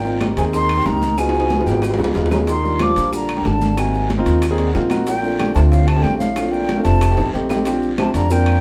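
Sunny and danceable, this short Afro-Cuban jazz cut carries a breathy, hollow flute melody with vibrato over a bright trombone second line, while a natural-toned grand piano accompanies and slips in a brief fill at 4.4 seconds, a thumpy, woody pizzicato upright bass sits up front, damped congas, ringing metal-shell timbales, claves, a raspy guiro and grainy maracas fill out the background, and round, very quiet bongos join in, all set back in a wet studio reverb.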